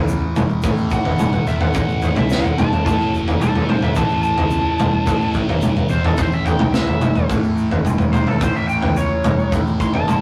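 Hazy and hypnotic, this short excerpt of psychedelic rock rides a straight 4/4 groove that stays on a single A chord throughout. A thick, dark fuzz guitar, double-tracked and run through distortion and phaser, plays a low riff from the opening moment. Beneath it sits an overdriven, picked electric bass with a fuzzy edge, tucked into the background. A grainy egg shaker ticks quietly in the background from 0.1 seconds, and a saturated, gritty breakbeat kit comes in at 0.4 seconds and sits up front, with a tight kick, a medium-tuned snare, toms and a rolled-off top. From 0.9 seconds a bright, overdriven slide guitar takes the lead with a high solo melody, all set in a rough rehearsal-room sound with light reverb and warm saturation.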